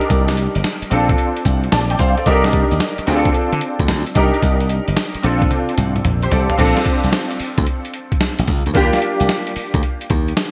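New jack swing R&B with a confident, slick strut, built on a gritty, pitched-down sampler drum kit with a thumpy kick and gated reverb, punchy electric slap bass, and a clear, polished concert grand piano with ensemble chorus voicing jazzy seventh chords up front, all set in a bright 1980s-style digital sheen with plate reverb, with a drum fill at 5.5 seconds leading into a new section at 6.6 seconds in this short cut from a longer piece.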